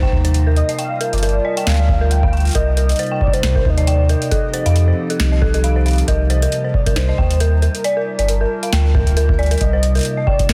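Cerebral and melancholic, this IDM excerpt moves at 136 BPM in C dorian with a light 16th-note swing, its chords cycling between Cm7, Gm7 and F7 over a slightly flat tuning. A velvety, detuned sawtooth lead with vibrato carries the melody while an eerie, inharmonic FM bell traces arpeggios, both bathed in chorus, delay and shimmer reverb, above a warbling, nostalgic lo-fi pad that pumps under sidechain compression. A round sine sub bass with tube saturation sits up front beside a deep, tape-warm kick that drops out from 5.6 to 6.1 seconds, while an analog drum machine adds a punchy snare and metallic hats with delay from 0.2 seconds, all in a dense, heavily limited master with digital ambience.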